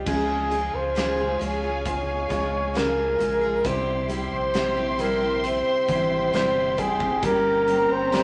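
A slow, straight 4/4 pulse at 67 BPM carries this melancholic, emotional pop ballad, driven by a huge arena drum kit whose punchy kick, medium-tuned snare, hi-hat and crash cymbal sound natural in a big room. Up front, a breathy, mellow flugelhorn plays the solo melody in a jazz style, with soft attacks, scooped notes and vibrato, its tone distant and roomy. Beneath it, a bright jumbo steel-string acoustic guitar picks full-bodied arpeggios on fresh strings with audible finger squeak, while a warm baby grand piano sits intimately in the background, its action noise faintly heard. A studio string section holds smooth-topped, bowed chords with expressive vibrato and portamento, and a round sine sub bass sustains deep notes underneath as the harmony moves from Db to C and then Gdim. A very quiet electronic swell appears at 7.8 s just before the cut, and the recording sits in a wet club ambience with a softened top end.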